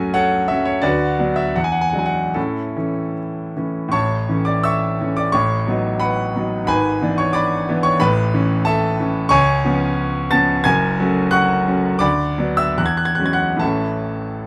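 In a 2/4 with free rubato, this romantic classical character piece for solo piano offers a warm, hopeful fragment from a longer work, its clear, natural grand piano sitting up front in close, detailed sound with light reverb, ranging from deep bass to bright treble as harmonies drift from minor shadows toward gentle major resolutions.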